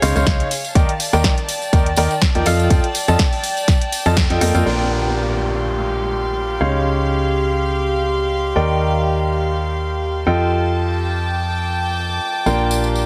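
A clear, intimate baby grand piano carries the riff up front, its action noise audible beneath vintage 12-bit sampler grit, digital delay and sidechain pumping, in this joyful, uplifting piano house passage with a light swing. A hollow, organ-like FM bass and a floating chamber string section bowed sul tasto share that pumping. A punchy electronic kick, a house kit with punchy snare and bright hats, and a close, dry tambourine drive the opening until a band accent at 4.2 seconds. A downlifter then sweeps in at 4.7 seconds, and the tambourine returns at 12.5 seconds, all within a heavily compressed, radio-style mix with moderate room reverb.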